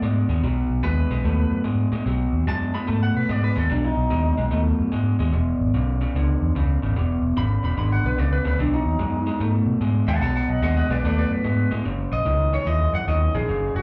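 A swung electric blues shuffle at 147 BPM in 4/4 rolls along in B mixolydian, a rollicking, soulful passage cut from a longer live club gig heard through the venue's PA with light reverb. A twangy, compressed low guitar riff through a small old amp and a dark, round, foam-muted fingered bass carry the full 13.8 seconds over B7 and E7 changes. Up front, a slightly broken-up, lo-fi second guitar with slapback echo adds a higher line, pausing from 4.6 to 7.4 seconds, while a clean guitar solo runs throughout.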